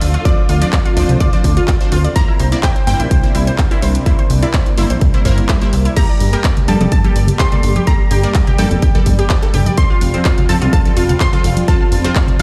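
A bittersweet, dreamy progressive house passage cut from a longer piece opens with a lush, detuned unison pluck carrying the melody, a soft, warbling FM synth bell tracing a second line high above it, and a bowed string section holding sustained chords in the background with a touch of vintage sampler grit. A plucky analog bass, punchy and funky with a wave-folded edge, sits prominently beneath, pumping against the beat, while a big-room dance kit adds crash, handclaps and hi-hat. Almost at once a glassy, crystalline wavetable pluck spins arpeggios with chorus and tape echo, and by 0.3 seconds a second unison pluck adds phased stabs as a punchy, layered electronic kick drives the straight pulse up front. An electronic swell sounds in the background between 5.2 and 6.0 seconds, and from 6.2 seconds close, dry bongos and congas played with hard hands join in the background. The harmony moves from Dm7 through C7 to Gmadd9 and F, and the whole mix sounds as if played on a big sound system in a bare stone room.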